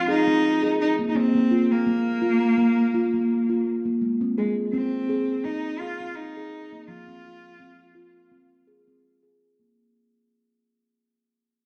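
Meditative and gentle, this short world-music passage, cut from a longer piece, moves at an unhurried 84 BPM in 4/4 with a light swing on the sixteenths, set in F minor pentatonic. A steel tongue drum played with soft rubber mallets carries arpeggios from F3 to Ab4, its tone round, pure and ringing, mellow and up front in a boxy small room. Over it, a single bowed cello sings the melody between Ab3 and F4 with smooth, even vibrato and tape echo. The harmony drifts from Fm through Bb5 and Ab before settling back on Fm, and the whole passage fades out from 0.0 seconds onward. The cello falls away at 8.3 seconds, leaving the drum to ring alone until 9.8 seconds, all wrapped in a wet echo-chamber reverb and a dark, warm production.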